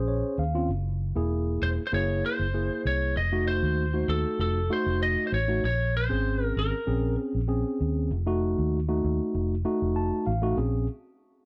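A lightly driven lead guitar, bright, twangy and slightly broken-up, carries the melody from 1.6 to 7.2 seconds in this brooding, mournful straight-eighth soul blues excerpt at 97 BPM in 4/4, tuned to A4 = 438 Hz. Underneath, a mellow tine electric piano heard through its built-in speakers plays clean accompaniment with fills at the start and near the end, while a vintage foam-muted fingered electric bass sits round, dark and punchy throughout. The chords move from Bbm7 through Gb7 and F7b9, and the sound is dry and close, in a 1970s studio style with little reverb.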